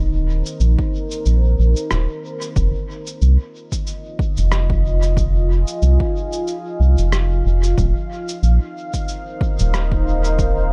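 Deep and hazy, this ambient dub excerpt moves at 92 BPM in 4/4 with a light 16th-note swing, settled in F minor. A deep, moody pad of detuned sawtooth unison and a sine sub octave holds sustained chords from the start, its slow attack and long release softened by chorus and its own reverb. Underneath, a round analog bass mixing square, sine and triangle tones with a wave-folded edge sits up front, fast in attack and sustained across the full 10.7 seconds. A sampler-style shaker and rim click, pitched down, muffled and tape-toned, enters at 0.5 seconds, trailed by dub echo, and a punchy, layered electronic kick joins at 0.8 seconds. The harmony rests on Eb6 before moving to Fm7 at 2.6 seconds and settling on Eb5, all in a dry, echo-heavy mix.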